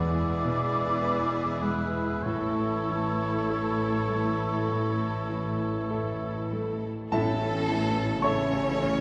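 A slow, rubato 4/4 pulse around 47-55 BPM carries this lyrical, lush romantic excerpt in A major for piano and orchestra, where a clear, smooth concert grand piano and a rich, vibrato-laden chamber violin section share the melody while an up-front oboe, an airy, hollow flute, a mellow clarinet and a second violin section weave secondary lines over a warm bassoon and viola section, mellow French horn chords, distant dark trumpet stabs, bowed cello and double bass, very quiet cymbal swell and tam-tam from 2.2 seconds, and a soft tuba entering at 7.1 seconds with a band accent, all heard from further back in a reverberant recital hall.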